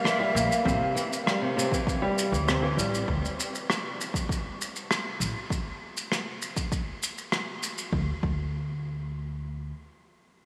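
A straight 4/4 pulse at 99 BPM drives this wistful, delicate folktronica excerpt, with a deep electronic kick and a smooth, brushed rim click and shaker up front. A woody, thumpy pizzicato upright bass on gut strings carries a filter sweep until 5.5 seconds. A dark, fingerpicked flamenco guitar plays low-passed, delayed arpeggios that stop at 3.1 seconds, and a breathy jazz flute with vibrato and chiff appears only at the very start, set back in the mix with analog delay. The dreamy mix is soaked in a huge ambient reverb as the harmony moves from Edim and Am7 to D5 before the chords fall away.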